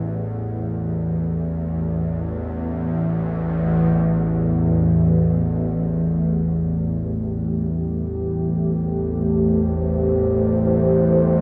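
Bathed in a wet cathedral reverb, this unsettling, ominous excerpt of dark ambient drone opens on a tense, string-like bowed drone, bright and up front with vibrato and a noise layer, until at 6.8 seconds a deep, moody pad of detuned, chorused sawtooth and sine tones with a sub octave swells in slowly above it and sustains alongside to the end.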